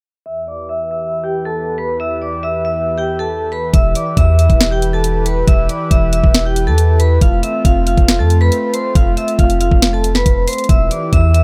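A bright, ringing vibraphone melody with fast motor vibrato and a smooth, detuned sawtooth pad under a filter sweep open this brooding, menacing half-time trap excerpt in E phrygian at 138 BPM, tuned to A4 = 436 Hz, before a deep, dark sine 808 bass and an up-front, tape-warm electronic kit with a knocking kick, sharp snare and bright hats arrive at 3.7 s, all in a dry mix as the chords shift from Em to F at 7.2 s and back to Em.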